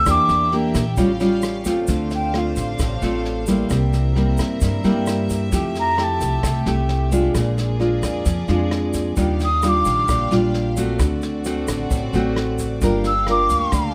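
An airy, mellow flute opens up front over fingerpicked nylon-string guitar, woody pizzicato upright bass and a floating bowed string section in this relaxed, romantic bossa nova excerpt, with brushed drums and, in the background, a grainy egg shaker, while the crisp, unsteady flute returns in brief phrases such as at 5.8 and 13.1 seconds.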